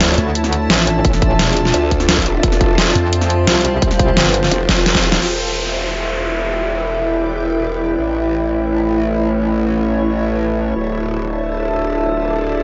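A straight 4/4 pulse of punchy, overdriven electronic kick and a dubstep kit with a deep, up-front snare and hi-hat drives this futuristic, aggressive dark technical drum and bass, as a saturated growling bass and a metallic FM wobble bass, which drops out at 4.5 s, churn beneath an eerie, warbling inharmonic drone and a blurred, evolving granular cloud pad that both pump against the beat, until a drum fill and band accent hand off at 5.2 s to a drumless passage where an electronic downlifter sounds in a moderate digital room ambience.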